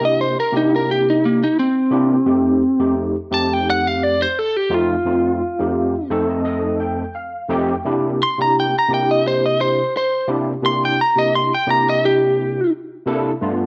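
Blues with a laid-back, swaggering feel in 4/4 and a light swing, heard as a short cut from a longer piece moving over C9 and F9 chords. A slightly broken-up, picked lead electric guitar, compressed and up front, carries the melody as a solo until 12.7 seconds, while a barky, gritty tine electric piano, overdriven through a combo amp with ensemble chorus, accompanies it and adds a fill from 5.8 to 7.8 seconds. The mix sits in a moderate echo chamber reverb with digital ambience and a dark top end.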